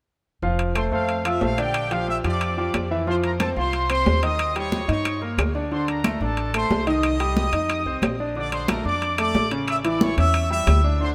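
Light reverb surrounds this joyful, festive salsa fragment, cut from a longer piece, played at a brisk 182 BPM in F major. Up front, a tight trumpet section carries the melody with a soft attack and light vibrato over brilliant, short-sustained grand piano chords and a thumpy, gut-strung pizzicato upright bass. Ringing metal-shell timbales and very quiet, woody claves drive the groove, joined at 3.1 seconds by thin-skinned congas played with soft hands in the background.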